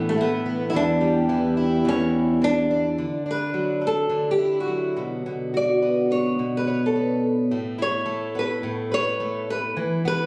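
Pop with a heartfelt, easy-going mood and a gentle swung sixteenth-note feel, cut from a longer piece, built on two up-front fingerpicked guitars. A flamenco guitar carries the melody while a plugged-in twelve-string acoustic, shimmering and octave-doubled with fresh strings and an auditorium-like body, fingerpicks the accompaniment through Asus2, Em7, Dadd9 and Bmadd9. The sound is captured on a phone in the room with light reverb, and a new passage begins at 3.0 seconds.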